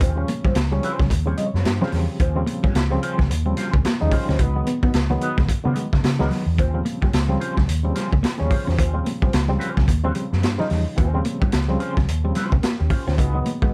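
Funk excerpt with a playful, energetic swing, where a gritty, boomy garage drum kit sits up front beside a round, punchy muted bass, a mellow wah guitar and a compressed clean guitar riff with spring reverb tucked in the background, while a barky, lightly overdriven electric piano with fast tremolo stabs over the Eb13 and Db9sus4 changes and plays a fill at 1.1 seconds, all in a dry, close sound.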